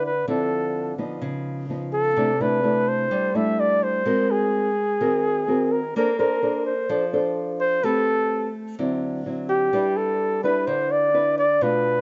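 A mellow flugelhorn with vibrato and a smooth top plays an up-front, jazz-style solo line from the first moment, over a small, thumb-plucked nylon-string guitar with audible finger squeak, in this relaxed, sophisticated bossa nova at 127 BPM in G major that moves through rich extended chords from Dm9 and C#9 to a final G6, set in a dark, light-reverb production with softened highs.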